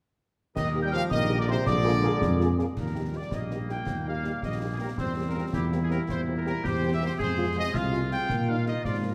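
In a wet concert hall with a 2.0 s reverb, this spirited, proud fragment of a military-style wind-band march moves at 109 BPM in a straight 6/8 in Eb major. The bright trumpet section carries the melody, and a dark, up-front tuba anchors the bass. A pure, hollow piccolo and a solo euphonium with light vibrato add second lines that stop by about 2.6 s, while a soft-attack woodwind section keeps its own line, a very quiet trombone section holds smooth-topped chords, and a mellow French horn section sits distant in the background. Close acoustic concert snare and bass drum with dark clash cymbals mark the march as the harmony moves from Eb through Bb7, C7/E and Fm before settling on Eb/Bb.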